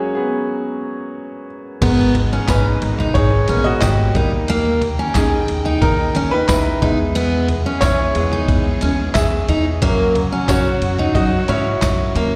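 A clear grand piano sits up front, opening alone for the first 1.8 seconds before carrying the accompaniment through this driving, bittersweet stretch of piano-driven pop in a straight 4/4. At 1.8 seconds the band arrives together: a picked, full-bodied steel-string acoustic guitar plays a riff, a woody upright bass with gut strings holds the low end, and a lush bowed string section with vibrato sustains smooth chords in the background. A gritty, pitched-down boom bap sampler-style kit with a thumpy kick, a medium-tuned snare, handclaps, toms, ride and crash drives the groove, while a jingly tambourine joins faintly at 2.5 seconds. The piano and guitar both carry a slapback echo. The harmony moves from F#add9 to G#madd9, then through D#, E and F#. The whole performance sounds like a live gig heard through the venue's sound system, with recital hall reverb around it, cut from a longer piece.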